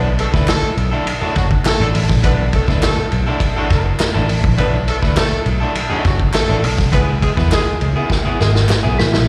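Cool and sly, this short funk cut in straight 4/4 sounds like a live gig heard through the venue's PA, with recital-hall reverb and a small-room ambience around the band. A vintage drum kit sits up front with a gritty, saturated sound, dark cymbals and a tight kick, and it plays a fill from 8.1 seconds to the end. Underneath, a foam-muted picked electric bass is round and amped. An electric guitar on the edge of break-up plays the accompaniment with slapback echo, while a distant, roomy horn section with light vibrato carries a second line, also touched by slapback. Crisp, compressed group handclaps sit in the background as the harmony moves from Bm7 to C#m7 at 6.9 seconds, and at 9.0 seconds a mellow, percussive tonewheel organ with key click and a slow rotary speaker takes up the melody just as the cut ends.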